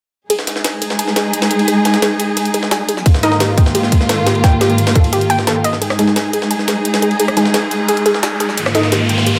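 Set in a moderate digital room, this aggressive, futuristic dark technical drum and bass excerpt at 174 BPM layers lush, bowed symphonic strings pumping under sustained chords with a warbly, lo-fi sawtooth pluck arpeggio swept by a filter and smeared with chorus and tape echo, over bright overdriven hi-hats and rim clicks and a gritty, pitched-up jungle kit with a high-tuned snare and ride. A tight, up-front overdriven electronic kick arrives at 3.1 s, joined by a brief hit of punchy, detuned orchestra-hit-like synth stabs at 3.2 s. After a brief break, a build-up from 5.8 s brings those stabs back under a filter sweep, and an electronic riser enters from 6.9 s.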